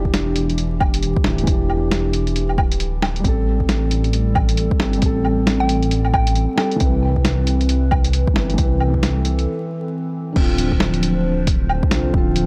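A dark, detuned sawtooth bass rumbles up front through this ghostly, nocturnal future garage excerpt in D dorian at 135 BPM, its swung 16ths carried by an overdriven electronic kick and a muffled, sampler-style kit of snare, hi-hat, crash and woodblock re-recorded in a large room. A felt-muted upright piano with audible action noise and analog delay, along with a warbling, tape-like pad drifting in the background, both pump against the sidechain over Em7, Am7 and Cmaj7, moving to Dm7 after a break at 9.5 seconds. A hollow, bouncy square pluck sounds a single high G between 5.6 and 6.6 seconds through tape echo, all set in a dry, gritty mix dusted with vinyl crackle.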